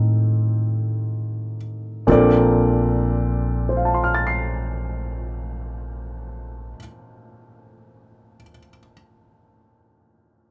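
Close, detailed microphones and a dry room put both players up front in this intimate, tender jazz ballad excerpt in Bb major, swung at a slow 37 BPM in 4/4. A warm grand piano with audible action noise accompanies throughout, moving from F9 to Bbmaj9 at 2.1 seconds after an opening that slows down. A woody pizzicato upright bass on steel strings holds the low end until 6.7 seconds.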